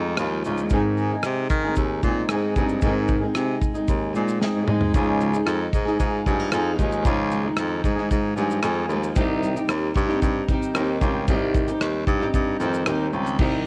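Tender and wistful, this acoustic pop fragment, cut from a longer piece, sets a dark, double-tracked, fingerpicked flamenco guitar over a forceful baritone saxophone with vibrato holding the bass part and a punchy modern drum kit with bright cymbals, shaker and rim clicks; after a drum fill, a very quiet picked steel-string acoustic guitar adds arpeggios from 4.9 seconds, with light reverb and small-room ambience on a cassette home recording.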